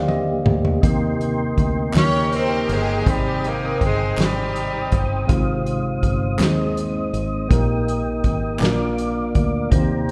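Slow gospel in 6/8 and Eb major at 54 BPM, this reverent, soulful excerpt opens with a drum fill from a dark, up-front soul kit with a fat snare and punchy kick, over a worn, slightly out-of-tune tine electric piano, a mellow, flute-like tonewheel organ through a slow rotary speaker with chorus vibrato, and a foam-muted fingered electric bass. At 2.0 s a raspy, gritty tenor saxophone and a lush, bowed studio string section carry the melody over chords moving from Eb7 through Abmaj7 and Fm7/Ab, while a very quiet, hollow group handclap sits in the background. The whole is bathed in a moderate concert-hall reverb, and the harmony arrives on a Bb chord at 8.6 s.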